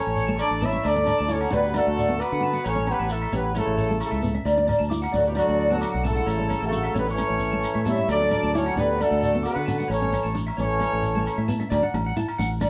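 Highlife guitar band music in D major at 132 BPM, with a straight, danceable 4/4 feel and a warm mood, heard as a short cut from a longer piece. A punchy, tight horn section carries the melody up front with vibrato and octave doubling, sounding slightly distant and roomy, and it stops at 11.5 s. Beneath it, a twangy electric guitar through a small old amp picks warm arpeggios with a slightly broken-up edge, while a full-bodied nylon-string guitar fingerpicks a classical-style accompaniment in the background, finger squeaks audible. A round, dark fingered electric bass sits up front. Grainy shekere and ringing, band-limited agogo bells further back fill out the percussion, and a mellow, jazz-style trombone with vibrato adds a second line in the background from 3.6 s. The band plays live together in a stone room with moderate reverb, cycling between A and D chords throughout.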